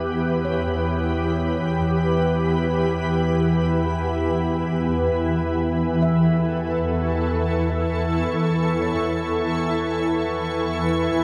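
Serene and melancholic, this slow ambient excerpt in 3/4 at 54 BPM rests on a single E minor chord in E dorian. A bright, ethereal shimmering pad with octave-up shimmer and chorus sits up front, while a very quiet handpan rings out meditative arpeggios. A dark, woody symphonic double bass section holds a low E with lush vibrato, and a calm organ-like drone lingers in the background, all bathed in a huge wet reverb.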